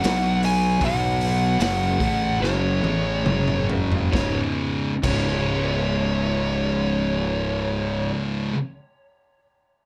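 Stoner and doom metal in C# minor, this heavy, sludgy passage crawls along in 4/4 at 66-79 BPM and is cut from a longer piece. Two thick fuzz guitars grind out a low riff from C#2 to B3, sitting in the background, while a growly, overdriven fingered bass digs down to C#1. Over them a dark, compressed fuzz lead guitar carries the melody between C#5 and G#5, colored by plate reverb and tape echo. A soft, flute-like tonewheel organ with key click and slow rotary speaker holds very quiet sustained chords until 7.2 s. The music slows down over its first 4.1 s while the chords move from B5 to F#5, and the raw garage drum kit, with its boomy kick, dark cymbals and gritty, saturated small-room sound, plays a fill from 2.4 to 4.1 s. The harmony lands on C#5 at 4.1 s, and the drums drop out at 5.3 s.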